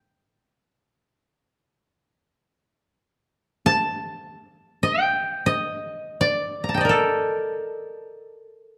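A solo koto, played with fingerpicks, carries this short fragment of Japanese traditional chamber music from 0.0 to 8.8 seconds. Its tone is woody and dry, sitting up front in the sound, and its line spans from A4 to Bb5. The music moves in free time, unmetered, with a calm, austere mood. A moderate recital hall reverb surrounds the instrument, and the overall production leans dark and warm. Cut from a longer piece, the passage offers a brief, austere glimpse of a single voice.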